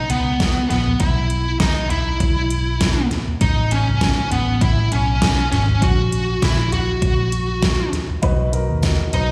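Swung sixteenths at 100 BPM in 4/4 drive this uplifting, piano-driven pop excerpt, where a bright, up-front overdriven lead guitar with slapback echo carries the melody over a round, punchy foam-muted electric bass and a layered electronic drum kit with a knocking kick, deep snare and its own overdrive, until a dark, woody upright piano with slapback echo enters at 8.2 seconds and a faint jingly tambourine sounds at 8.8 seconds, the mix captured like a live gig through a venue's PA with recital-hall reverb and small-room ambience.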